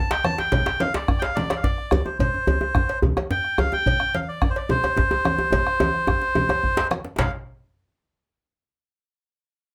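A driving 12/8 pulse at 144 beats per minute, counted in dotted quarters, carries this powerful excerpt from a longer West African drum ensemble piece. A tight, cracking djembe played with soft hands sits up front, while a second djembe with a warm, deep body stays in the background. A dark bombo, heard close and dry, anchors the low end, low-tuned congas add a bright, thin-skinned and vintage, band-limited colour, and a metallic cowbell rings quietly behind them, also close and dry. Over the drums, a reedy, breathy melodica with a nasal, airy tone and a wooden-cased character plays the melody between C5 and A5, sounding from the very start until 7.3 seconds. A drum fill runs from 5.5 to 7.2 seconds, and a moderate small-room reverb gives the ensemble a compact, lively space.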